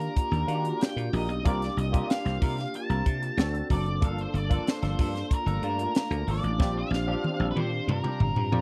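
A straight 4/4 groove at 93 BPM drives this short cut from a longer piece of polished 1980s jazz-funk pop in G minor, its mood urban and nocturnal. A crisp fusion drum kit sits up front with a punchy kick, a high-tuned snare, hi-hat and toms, and a drum fill runs from 6.6 to 8.6 seconds, while a dry, thumbed slap bass, growly and foam-muted, sits just as close alongside it. A barky tine electric piano, lightly overdriven through a combo amp with ensemble chorus, supplies the accompaniment, and a clean, twangy electric guitar with lush chorus picks a compressed riff in the background. On top, an octave-fuzz lead guitar carries the melody with a dark, distorted tone. The harmony moves from Ebmaj7 through C7sus4 and D7 to Gm9, landing on Bb69, all captured in a dry, close studio sound with little reverb.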